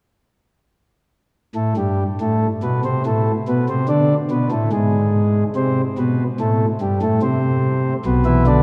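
Drenched in the long, wet decay of a cathedral, this brief serious and driving baroque-style fugue fragment features a solo chamber organ with a full, up-front principal chorus and audible chiff, entering at 1.6 s in a low register and sounding an E5/B chord at 8.1 s.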